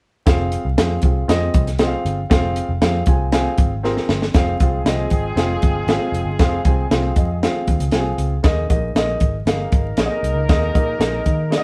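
An up-front compact cocktail drum kit with a high-tuned snare, punchy kick and rolled-off top drives this urgent, uptempo 1960s-style soul excerpt in F minor at 117 BPM, over a mellow, short-sustained dark grand piano that adds fills around 2.8 and 6.9 seconds, a round, foam-muted picked electric bass, and a distant, vibrato-laden horn section in octave doubling that enters at 4.3 seconds, all captured as a live band in one room with light reverb and vinyl crackle.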